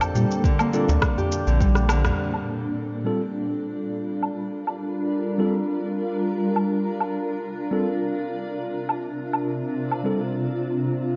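A dark, wet recording with a long echo-chamber tail opens this mystical, hypnotic organic downtempo passage at 103 BPM in G minor, where a cloudy, evolving granular pad holds sustained chords up front with shimmer reverb and sidechain pumping while a ringing, fingerpicked Celtic harp plays arpeggios through 12-bit sampler grit and tape echo until 3.8 seconds. A round sine sub bass and a deep electronic kick, re-recorded in a large room, drop out by 2.1 seconds, and a crisp metal-shell darbuka sits in the background under soft hands until a drum fill and band accent lead into the next section at 2.2 seconds. Low-pass filtered, tape-warm electronic woodblock, shaker and rim click keep a lightly swung pulse, and a mellow, clean tine electric piano carries the accompaniment with tape echo and shimmer as the chords move from Bbmaj7 to Gm7 and C7sus4.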